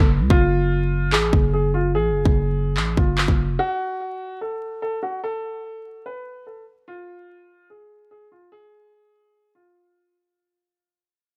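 A dark, mellow grand piano opens this menacing drill excerpt, carrying the melody between F4 and B4 through a low-pass filter. It sits at a half-time feel over a 146 BPM pulse in 4/4, tuned to A4 = 445 Hz, with vinyl crackle hanging in the digital ambience. A growling, buzzy 808-style bass with a fast attack and decaying tail joins from the start, ranging from F1 to C#2 and sitting up front until 3.6 seconds. An electronic drill kit of handclaps and a hard-clipped kick enters at 0.3 seconds, re-recorded in a large room, and drops out at 3.4 seconds. The opening bars rest on an F minor chord before the harmony falls away at 3.6 seconds, leaving the piano to carry the ominous mood alone as the whole passage fades out toward 10.2 seconds.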